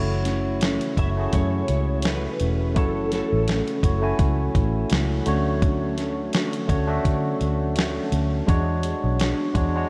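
This hazy, mellow stretch of indie bedroom pop opens at once on a barky tine electric piano heard through a combo amp with cassette-tape coloring, a dark, clean electric guitar sitting in the background with analog chorus and vibrato, and a round, foam-muted fingered electric bass placed up front. A dusty soul sampler-style drum kit of hi-hat, thumpy kick and medium-tuned snare joins almost immediately, its compressed sound carrying 12-bit grit and the air of a large room. At 84 BPM in 4/4 with a gentle 16th-note swing, the harmony in F# minor rests on F#m7 before moving to Dmaj7 and then E13. From 1.0 to 5.2 seconds a clean lap steel guitar carries the melody with slide and volume swells, its warm tone softened by ensemble chorus and analog delay. A huge ambient reverb soaks the whole mix in a dreamy haze, and the passage is cut from a longer piece.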